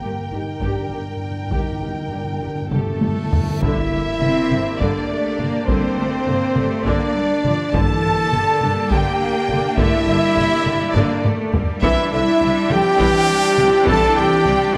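A wet scoring-stage reverb wraps this short cut from a longer epic orchestral film score, a relentless, heroic cue driving at 205 BPM in eighths through an uneven 7/8 metre, settling into G dorian from 3.6 s. From the first moment, close, dry timpani struck with hard mallets on calf heads play alongside the strings and horns, their articulate fill running to 3.6 s, while a taiko ensemble hit with hard sticks enters at 0.6 s and carries the drums through to the end, with fills at 2.7 and 11.0 s. Bowed violin sections sing the melody with expressive vibrato and a smooth top, a second violin line sits behind them, and violas, cellos and double basses fill out a lush, rich lower body, the basses reaching down to G1. A dark, distant French horn section holds soft-edged chords, a close-miked solo trumpet adds stabs from 2.7 s, and from 3.6 s a further string section joins in the background with sustained chords. 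A huge, bright reverse cymbal at 3.4 s sweeps into an impact that marks the shift, and the harmony moves from G minor to Cadd9 near the close.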